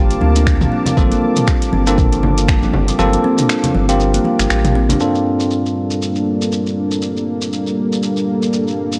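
A swung 119 BPM afro house groove in 4/4 drives this hypnotic excerpt in G minor. A deep, tape-warm electronic kick thumps from 0.5 to 2.6 seconds beneath a layered deep house kit of finger snaps, metallic hats and toms, with ringing background congas played with soft hands and a grainy, close shekere. A round, saturated analog bass sits up front, and an airy, woody kalimba with analog delay, a moody detuned sawtooth pad with chorus holding a Gm11 chord, and bell-like tine electric piano stabs all pump with the sidechain; around 5.0 seconds the kit, congas, bass and kalimba stop, leaving the pad, shekere and a filter-swept electric piano over light reverb and a gritty, cassette-tinged sound.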